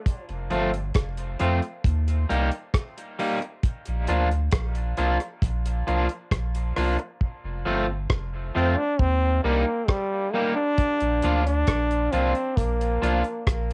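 A brilliant trombone carries the melody of this spacious, hazy dub reggae excerpt, slipping in for a brief phrase before returning in earnest at 8.6 seconds with a light vibrato and a present, pop-styled solo voice soaked in dub echo. Underneath, a damped 70s drum kit sets a slow, straight 4/4 pulse at 67 BPM in Bb major, its dry, tight kick, hi-hat and rim click sitting up front with a cassette grain, and the hi-hat falls silent from 7.2 to 10.8 seconds. A deep, round sub bass with a sine-like, mellow tone and a fast attack holds long notes up front in the mix. An electric guitar at the edge of break-up fills out the accompaniment with a picked, twangy sound, also sent through dub echo and cassette tape. The harmony cycles through F, Eb and Bb, and light reverb with a homemade cassette quality gives the whole piece a soft, hazy glow.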